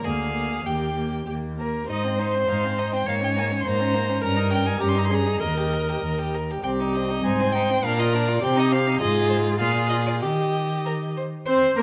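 A quick, rubato 2/4 pulse at 100 BPM drives this spirited, lively classical-period movement for string quartet, cut from a longer piece and settling into Eb major from 6.6 s as the harmony passes through Ab, Cm and Bb before landing on Eb. A clear first violin carries the smooth, vibrato-tinged melody between Bb4 and C6, over a rich, slightly distant second violin line, a focused viola accompaniment and an even-toned cello bass ranging from C2 to C5. Close, detailed microphones capture the four bowed players within a moderate concert hall reverb.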